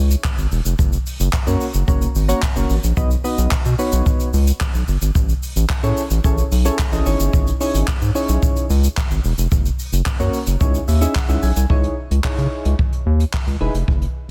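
A round, deep analog bass sits up front in this confident, driving dance-pop cut from a longer piece, its sustained, wave-folded tone pumping against the beat. A jazz brush drum kit with a boomy kick, hi-hat, handclaps and shaker keeps a straight pulse in a dry studio room, while soft, chorused electric-piano-like synth keys enter at 1.5 seconds, pumping gently through a C#m–F#–B–Amaj7 progression. The keys play a short fill from 10.6 seconds before a brief new section arrives at 11.7 seconds, all under a dense, heavily limited master.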